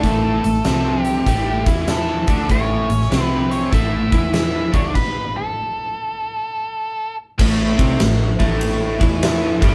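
A swaggering, raunchy blues rock and southern rock groove in a power-trio mould opens at once, with a huge arena drum kit, a biting overdriven rhythm riff, muted bass, organ and two lead guitars all sounding together on an A chord. The tempo sits at 98 BPM in 4/4 with a loose swing on the eighths. Up front, the acoustic kit pairs a fat snare and punchy kick with bright crash, hi-hat and ride cymbals, while the double-tracked, picked guitar riff carries a warm, overdriven bite, and a vintage fingered bass adds a dark, round, foam-muted low end. An octave-fuzz lead guitar takes the melody with a dark, distorted tone, shadowed by a very quiet second lead line that drops out at 4.8 s. Behind them a mellow tonewheel organ holds sustained chords, lightly overdriven with chorus vibrato, key click and a slow rotary speaker. The band hits a stop at 4.9 s and moves into a new section at 7.4 s, all captured live in one room with moderate studio ambience, in an excerpt cut from a longer piece.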